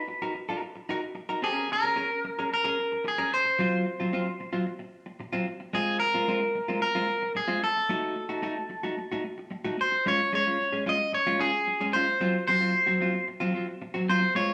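A live band sound fills a small room, with moderate studio reverb giving this short excerpt from a longer disco piece a glamorous, sultry air in a straight 4/4. Up front, a bright, twangy electric guitar on the edge of break-up carries the melody from the first moment, picked in a slightly broken-up tone. Alongside it, a clean electric guitar enters at 0.1 seconds with picked accompaniment, its warm, compressed, scooped tone bathed in spring reverb and sitting lower than the lead. The harmony drifts through lush chords such as Bmaj7, Bbm7 and Ab69 before a darker diminished colour. At 10.1 seconds the music shifts into a new section built on Absus4 and F5, and both guitars play through to the close at 14.5 seconds.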